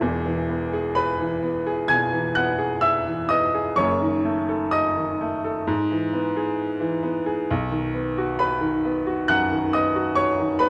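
An upright piano, clear and woody with a vintage character, sits up front and carries this lyrical, hopeful romantic character piece entirely on its own. Cut from a longer piece, the passage unfolds in an unhurried four-beat metre with a flexible rubato feel, the phrasing breathing freely rather than holding to a strict pulse. The piano spans from deep bass notes at E1 up to high treble at G#6, giving the writing a full, rounded register. The harmony moves from E through D#dim/F# and E/G# before settling on B around 7.5 seconds, lending a gently searching yet optimistic lift. A lush recital hall reverb surrounds the smooth piano tone, adding a sense of space and a soft glow to its decay through the final moments at 10.7 seconds.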